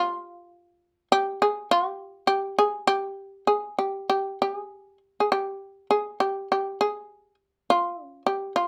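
Lightly reverberant, this calm, austere fragment of Japanese traditional chamber music, cut from a longer piece, features a solo fretless shamisen up front for its full 8.7 seconds, its plectrum-plucked notes buzzing and percussive yet mellow and powerful as they move freely in rubato around a slow 51 BPM in 2/4, staying between F4 and Ab4.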